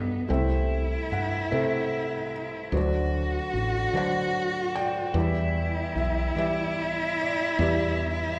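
Reflective and intimate, this short fragment of an acoustic folk-pop ballad in 6/8 sets a soft, mellow felt-muted upright piano up front on the melody, its hammer action faintly audible, over a C6, D7 and Em7 progression. A bowed cello carries the second line with expressive vibrato and portamento, while a woody fretless electric bass adds a round, growly low end. The trio sits in the lush reverb of a church or concert hall, with traces of lossy compression in the sound.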